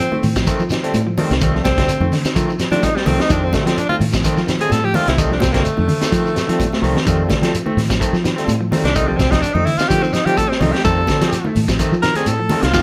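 Afrobeat excerpt with a hypnotic, joyful feel, where a bright, smooth-topped tenor saxophone solos up front with light vibrato, plate reverb and tape echo over a round, foam-muted fingered bass, clean picked guitar stabs, fingered semi-hollow guitar arpeggios, a very quiet tonewheel organ with key click and slow rotary, high-tuned congas, a grainy shekere, and a vintage drum kit with punchy kick and high-tuned snare that plays a fill at 6.6 seconds, over an F7 chord in a large studio room.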